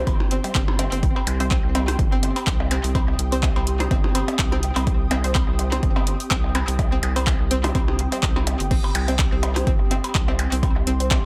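Muted, deep dub chord stabs with phaser and analog delay open this clinical, sparse stretch of minimal techno alongside a rubbery, hollow square-wave bass that pumps against the sidechain, joined almost at once by an ethereal pad with ensemble chorus and reverb. A dry, overdriven electronic kick and the punchy analog drum machine's crash cymbal, handclaps and hi-hat lock into a gently swung groove, joined by echoing percussion blips, while a twangy, string-like resonator pluck on a single note sits in the background. The mix is echo-heavy, with little reverb, and the whole passage is cut from a longer piece.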